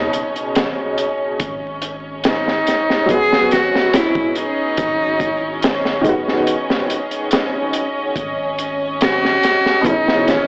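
Melancholic and smoky, this slow 71 BPM trip hop excerpt in G# minor sets a close, vibrato-rich bowed cello melody with dub echo over a woody, boxy upright piano shimmering with tremolo and tape echo, smooth sustained studio strings, a deep round sub bass and an up-front, gritty breakbeat kit with a high-tuned snare, while a tense, string-like drone creeps in very quietly at 5.9 seconds, all inside a small, dry room coloured by vinyl crackle and an AM radio tone as the chords move from C#7(no3) to G#m7 and on to C#m7.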